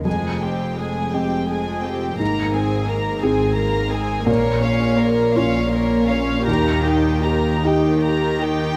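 A chamber violin section carries the melody with light vibrato, soft attack and an intimate sul tasto tone, above a floating symphonic violin line and a rich chamber viola section in the background. Beneath them, a felt-muted upright piano sounds mellow with audible action noise, while a distant cello section and a pure double bass section hold the bass through chords moving from Fmadd9 to Abadd9, Bbm and Eb. This short cinematic passage in a rubato 6/8 feels longing and sorrowful, set in a moderate scoring stage reverb.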